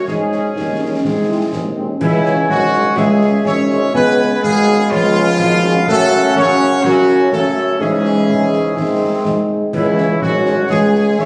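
A bright trumpet section carries the melody up front in this resolute, martial wind-band march in 2/4, cut from a longer piece. A dark euphonium and a mellow woodwind section, the woodwinds sitting in the background, add second lines, while distant trombones hold sustained chords, French horns supply warm accompaniment, a clear tuba anchors the bass, and concert snare, bass drum and clash cymbals with dark cymbal tone keep the martial pulse. The harmony opens on G#sus4 and settles into C#m by 2.0 seconds, and the band sounds as if captured on a phone in a recital hall, with moderate reverb and compression.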